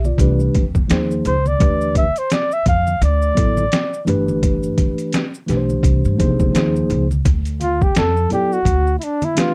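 A swung 85 BPM groove in 4/4 drives this short excerpt of jazz-hop, with a sampler-style trip hop kit entering at 0.2 seconds: a thumpy kick, medium-tuned snare and hi-hat, pitched down, muffled, compressed and overdriven, as if re-recorded in a small room and set up front. Beneath it, a woody upright bass with steel strings plays pizzicato in the low register, while congas and maracas add bright, saturated hand percussion in the background. A mellow tine electric piano, clean and heard through its built-in speakers, carries the chords in D dorian, moving through colours such as C69, Ebsus2, Dm69 and Gadd9. At 1.3 seconds a smooth-topped flugelhorn takes the melody with a soft attack and jazz vibrato, stepping into a solo from 7.3 seconds as the harmony settles onto Dm69 and Dsus2. The dry, close sound of a 1970s-style studio gives the whole a cool, nocturnal mood.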